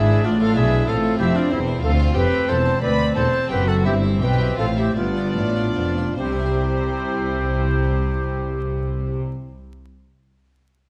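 Baroque-style classical concerto movement in 6/8, lively and festive and cut from a longer piece, with an airy, wooden flute up front carrying the melody over a reedy, gut-string violin section, while a second violin line, a warm viola section and a round, Flemish-style harpsichord sit in the background. A rich double bass section sits up front beneath a distant cello section, and the music slows from 0.9 to 6.2 seconds before arriving on a C chord at 6.2 seconds. Moderate recital-hall reverb, dark production and vinyl crackle frame the ensemble.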